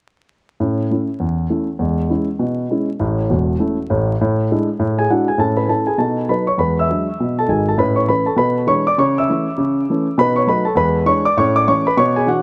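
A brisk swing in 4/4 drives this exuberant stride piano piece, its eighth notes lilting with a moderate swing. A single concert grand carries everything alone from 0.6 to 12.4 seconds, ranging from deep bass notes up into its upper register. The piano sounds warm and close, with a rich low end, short sustain and a touch of tape echo. Its harmony moves through a cheerful cycle of dominant chords, including seventh and ninth voicings, before settling home on the tonic. The brief clip, cut from a longer piece, is set in a moderate studio reverb with vinyl crackle that lends it a vintage patina.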